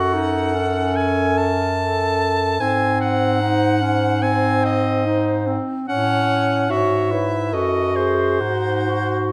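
A close-miked soprano saxophone sings the melody up front with clear tone, vibrato and a soft attack, while an alto saxophone traces a second line, a warm clarinet supplies accompaniment and a prominent bass clarinet anchors the low end, in a melancholic, solemn classical excerpt for single-reed quartet at a rubato 73 BPM in 4/4 that moves from F#m through G#, A and D#dim/F# to a closing G#7, all set in a reverberant recital hall.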